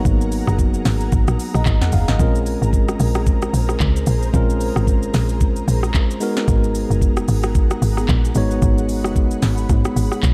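This amapiano excerpt moves at 112 BPM in 4/4, with a 58% swing on the sixteenths giving its groove a loose, rolling feel, and the mood is soulful and hypnotic. The afro-pop drum kit sits up front from 0.1 seconds, an electronic, produced set of knocking kick, sharp snare, smooth hats, handclaps, rim click, shaker and toms. Beside it the tight log drum bass punches through with a fast attack and decaying, percussive notes, its FM tone carrying a noise layer. A clean, direct tine electric piano supplies the accompaniment, while an ethereal pad of detuned sawtooth, triangle and sine voices with a sub octave holds slow-attack chords, colored by ensemble chorus, built-in reverb, tremolo and sidechain pumping. The harmony shifts from Abm9 to Bbm9 at 2.2 seconds and back to Abm9 at 6.2 seconds, all within a dark, warm digital ambience.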